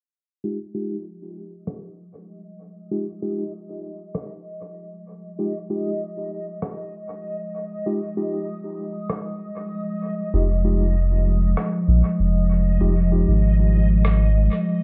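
Ambient dub in F minor at 97 BPM, this short excerpt from a longer piece feels deep and meditative, resting on a single Fm9 chord in a straight 4/4. A warbling, nostalgic pad holds sustained chords from one second in, its detuned, lo-fi tone thickened by chorus and its own reverb, while a mellow tine electric piano places stabs through a low-pass filter and dub echo. Both carry a filter sweep across the whole passage. A muffled, sampler-style electronic rim click enters at 1.7 seconds, its compressed hits trailing into dub echo, and a reversed, granular texture swells in at 3.5 seconds as a bright, dreamy shimmer high above. A round, dark analog bass arrives up front at 10.3 seconds, anchoring the low end with a sustained, deep tone. The echo-heavy mix sits in a light digital ambience with an overall low-pass softness.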